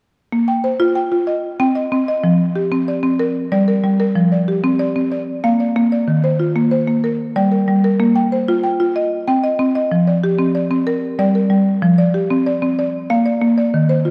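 A lush hall reverb with a long 3.1-second tail surrounds this rough home demo mix, a short piece cut from a longer work in a southern African traditional style. A single buzzing marimba, played with medium hard mallets on hardwood bars, sits up front with a woody, buzzing tone and a warm body. It spins out arpeggios from Eb3 up to G5 between 0.3 and 14.1 seconds, moving at 125 BPM in a straight 12/8 feel. The harmony in Bb major moves from Bb through C minor, F and G minor, back to F and Bb, on to Eb and G minor, then begins the sequence again. The repeating pattern and resonant hall give the music a hypnotic, warm mood.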